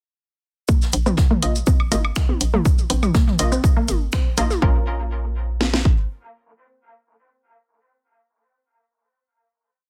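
A sparse, quirky minimal techno piece opens at 0.7 s with a squelchy, detuned blip pluck pumping through a five-step loop that drifts against the bar, a punchy house kit driving a four-on-the-floor kick and cracking snare up front, and a brushed acoustic shaker-and-snare breakbeat tucked in the background. Moments later an analog drum machine adds snaps, hats and shaker, a hollow, bouncy FM bass pumps on the off-beats, and electronic toms and woodblock click in cross rhythm through delay. Crisp wavetable chord stabs echo sparsely in one parallel shape as filter sweeps on the pluck and stabs build to 4.6 s, where the piece lands on a final chord, the stabs echoing on until 9.4 s, all within a dense, heavily limited mix with light reverb.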